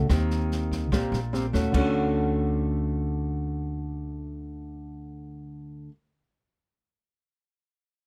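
A straight 4/4 bossa nova groove opens this sophisticated, breezy fragment of a longer piece. An up-front, thumb-plucked classical nylon-string guitar carries the accompaniment from an Eb6 chord into a Dmaj7 at 1.7 seconds, over a woody pizzicato upright bass with steel strings. An open jazz kit in a small, natural-sounding room adds dark cymbals, a medium-tuned snare with rim clicks and a boomy kick until 1.8 seconds, all captured dry and close in fine detail.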